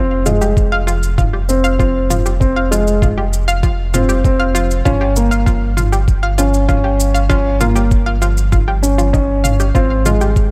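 Piano and strings electronica in F minor at 98 BPM, this intimate, hypnotic excerpt moves from Fm through a rootless Eb7/G at 4.9 seconds to Abmaj7 at 9.8 seconds. A dark, woody upright piano riff with short sustain and delay sits up front over a deep, round sine sub bass with tube saturation and sidechain pumping. From 0.3 seconds, bright sawtooth-and-square analog pluck arpeggios with a sub octave, chorus and delay join overdriven, layered electronic toms and shaker, and a muffled, thumpy, pitched-down kick drum enters at 0.6 seconds, all in a light reverb.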